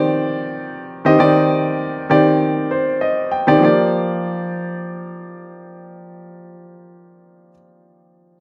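A warm grand piano carries this short dancehall piece alone, sitting up front in a present, polished sound with a short sustain to each note. The mood is sultry and hypnotic, set in a straight 4/4 feel, with the piano playing an accompaniment role across a span from Eb3 to G5. The passage opens on a Cmadd9 chord, and a piano fill from 2.4 to 3.6 seconds leads into a new section where the harmony settles on Gm7. A light reverb and a digital ambience surround the keys. The piano plays through to 8.4 seconds, as this fragment is cut from a longer piece.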